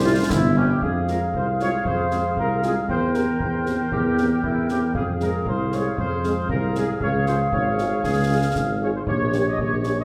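A stern, resolute military-style march for wind band in F minor at 116 BPM, cut from a longer piece, where a distant, roomy trumpet section carries the melody over an up-front woodwind second line with vintage character, a very quiet, smooth-topped French horn accompaniment, a bright trombone section heard barely at all in the first 0.5 seconds, a mellow, up-front tuba bass, and close, dry concert snare and bass drums with dark cymbals entering at 0.3 seconds, all set in the wet reverb of a recital hall as the chords move from F minor through C7/E to D-flat.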